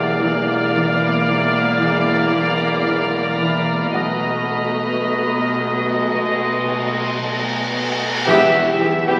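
In a slow, straight 4/4 pulse, this eerie, ominous fragment of a suspense film score opens with a soft, sul tasto bowed string bed and a thumb-plucked concert harp riff that rings low beneath it. Up front, a rich chamber violin section carries the melody with light vibrato, joined by dark violas, a very quiet cello section, shadowy double basses in the background, and a deep, round sub bass drone. High above, a pure, floating symphonic violin section hovers at a distance, while a worn baby grand piano adds a faint, long-sustaining texture. Harmony moves from A#/E to B7, and a huge cymbal swell rises from 6.0 seconds into a dark impact at 8.3 seconds, where the music lands on E minor as a second violin line and sustained French horn chords enter in the background. The whole cue sits in a wet scoring-stage reverb and is coloured by the crackle of a very old 78 rpm record.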